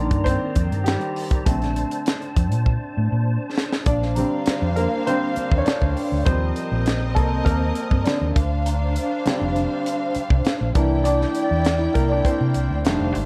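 A clear, slightly worn grand piano leads this lush 1970s-style soul excerpt, soloing across its full length at 100 BPM in a straight 4/4 in Bb major, with a smooth, warm mood. Beneath it, a round, dark hollow-body electric bass and a tight funk kit with a high-tuned snare sit up front, while a mellow glockenspiel struck with rubber mallets rings softly in the background. A fat, lightly overdriven tonewheel organ with key click, chorus vibrato and a slow rotary speaker holds sustained chords until 3.8 s, and a drum fill starting at 2.7 s carries the music into the next passage. From 3.9 s a bowed studio string section adds an even, vibrato-rich second line. The harmony moves from Cm9 to Bbmaj9, Bb69 and C9, and the dark production with light studio reverb keeps the sound cohesive.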